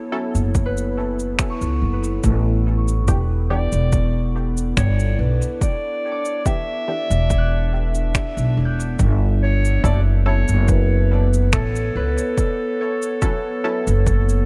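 A small room's ambience wraps this hazy, meditative ambient dub cut, taken from a longer piece and moving at an unhurried 71 BPM in straight 4/4 in E dorian. A warbling, nostalgic pad of detuned square and triangle tones holds sustained chords with a slow attack and long release, its lo-fi, ring-modulated haze thickened by chorus and its own reverb. Up front, a woody pizzicato upright bass anchors the low end beside a punchy, layered electronic kick. Around them sit cabasa and finger snaps with a tight, rolled-off top, while a muted, deep chord stab of sawtooth and triangle tones flicks through the background with chorus, cassette tape colour and dub echo. A ringing, fingerpicked concert harp spins quiet arpeggios through dub echo, and from 3.5 s a mellow, distant clarinet carries a classical-style solo melody, also trailed by dub echo. The harmony drifts from F#m7 to Em7 at 3.1 s and back to F#m7 at 9.8 s.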